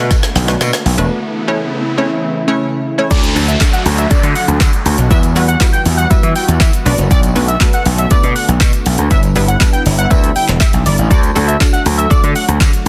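A straight 4/4 dance-pop groove from an up-front deep house drum kit with a deep kick and woody snare, a very quiet, distant tambourine and an overdriven slap bass pumps beneath a detuned sawtooth analog pluck and a thick, warbling unison pad, both pumping too, while a background riser and downlifter builds into a carefree, euphoric drop at 3.1 seconds, where a bold, retro octave-doubled lead arrives with phaser, delay and vibrato.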